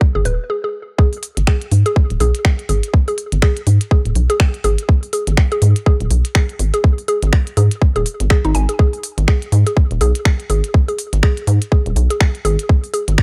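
An overdriven electronic kick opens this cool, clinical minimal techno excerpt at 0.0 seconds, tight and up front with a small room around it. A woody, round FM pluck with a mallet-like, percussive attack and a sub octave arrives almost at once, colored by chorus, cassette tape and an analog delay, and it breathes with sidechain pumping. Beneath it, a rubbery, hollow square bass with a fast filter pluck and a dark, resonant, wave-folded edge bounces up front with the same sidechain pumping. A clicky, overdriven kit of finger snaps and hi-hats sits low in the mix with a light swing on the sixteenths. After a brief break from 0.5 seconds, the drop lands at 1.0 seconds and the groove runs on to the end. The whole recording is dry and gritty, with hardware grain, transformer saturation and tape character.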